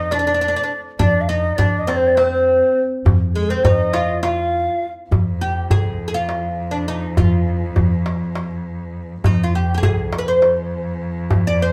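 Hypnotic and longing, this excerpt from a longer Turkish makam ensemble piece moves in a straight 7/8 at 203 BPM counted in eighths, set in F makam nikriz with tuning at A4 = 436 Hz. A bright, woody oud carries the melody up front from start to finish, its plectrum-plucked double strings ranging from Ab3 to D5. A breathy, reedy ney plays a second line with vibrato until 4.9 seconds, while a dark, thumpy upright bass holds the low end between C2 and F2 with gut-string pizzicato. A crisp, deep metal-shell darbuka struck with hard hands drives the rhythm throughout. At 5.1 seconds the music moves into a new section as a rich bowed cello enters on a soft-attack F2 drone, shaded with vibrato and portamento. The band sounds as if playing live together in one studio room with moderate reverb.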